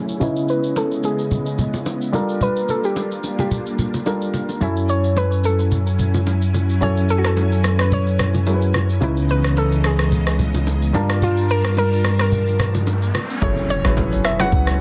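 A swung sixteenth-note groove from a deep house kit, with its punchy kick, rim click and shaker, joins small-room congas and bongos to drive this soulful, hypnotic amapiano piece. A brief downlifter opens it, and a dark, worn concert grand with audible action noise plays alongside vintage sawtooth string-machine violas carrying ensemble chorus, sidechain pumping and a low-pass filter as a filter sweep unfolds, while a soft, round pluck carries the melody through chorus and digital delay. A bell-like tine electric piano takes the bass line from 4.6 seconds, a background riser builds from 12.5 seconds, and the drop at 13.4 seconds brings an impact and a deep FM log drum bass, set in a dry, dense, heavily limited mix.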